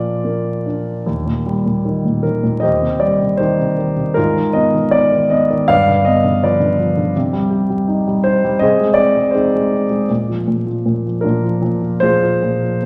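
A dark, mellow grand piano, set up front with its action noise audible, plays alone throughout this 12.9-second fragment of a longer lyrical classical piece in Eb major. The peaceful performance moves at 80 BPM in 4/4 with free, rubato timing, drifting through chords such as Cm/Eb, Abm6, G7 and Bb7 across a range from Eb2 to F5. A reverberant recital hall and a vinyl crackle give the intimate, smooth playing a vintage feel.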